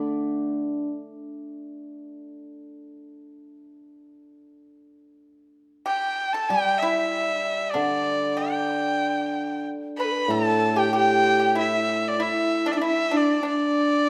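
Graceful and pastoral, this short excerpt from a longer Chinese traditional chamber piece moves at a rubato 95 BPM in 4/4 in the G gong mode. A shimmering, ringing hammered dulcimer sounds briefly at the start and returns up front as accompaniment. From 5.9 seconds a rich, nasal erhu carries the melody with light vibrato, portamento and an airy bow, over a bright, percussive pipa second line. A breathy low xiao with soft attacks joins at 10.0 seconds, all set in a recital hall reverb.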